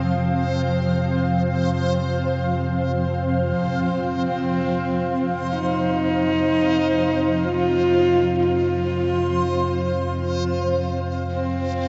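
Vast and ominous, this free-time dark ambient drone pairs a cloudy, evolving granular pad and a deep rumbling drone under a bright reversed texture, all in a vast echoing space. At 3.6 seconds a husky, intimate horsehead fiddle carries the melody up front with light vibrato and portamento, while a filter sweep passes over the synth drone and barely audible bronze bossed gongs in a gamelan style play arpeggios until 9.4 seconds.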